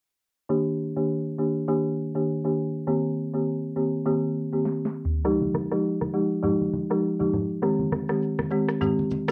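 A swung 16th-note afrobeats groove at 101 BPM in 4/4 sets a sunny, joyful mood in this short cut from a longer piece, where an up-front folk marimba with medium mallets plays woody, dry, rustic, boxy accompaniment over Ebmaj7, Cm7, Fm9 and Abmaj7 in Eb major from 0.5 seconds. An electronic, tape-warm afro-pop drum kit with a sharp snare, rim click, shaker and toms enters with a fill at 4.7 seconds, and bright, low-tuned acoustic congas played with hard hands join at 5.4 seconds. All of it sits within a light reverb and a cassette home-recording sound shaped by a low-pass filter and a filter sweep.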